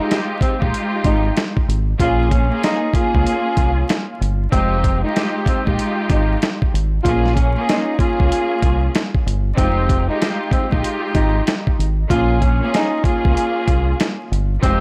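A breathy tenor saxophone carries the melody in a whispered, subtone jazz voice with scooped notes, filtered and trailed by tape echo, over lush bowed strings that shimmer with vibrato from the start of this dark, moody boom-bap hip-hop cut at 95 BPM with a swung sixteenth-note feel. A dusty, compressed sampler-style kit with a thumpy kick and medium-tuned snare enters at 0.1 s, and a deep, round dub bass, roughened by transformer saturation, joins at 0.6 s, both sitting up front. The dry, gritty recording, flecked with vinyl crackle, rocks between Fm9 and Bbm7 throughout.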